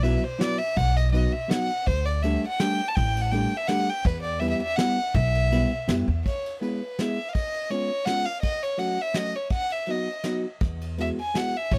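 A charming, nostalgic musette waltz at 164 BPM in a swung 3/4 opens in E minor with all four parts at once: a rich, close violin carries the melody with light vibrato and an airy sul tasto bow, touched by tape echo, over a clean, fingered hollow-body electric guitar, a woody, growly pizzicato upright bass and a soft brush kit with a fat snare, tight kick and dark ride cymbal. At 6.2 seconds the tune brightens into E major and the bass falls silent, returning at 10.6 seconds as the harmony settles on an Eadd9 chord. The dry, intimate 1970s-style studio sound keeps violin, guitar and bass up front in this short excerpt from a longer piece.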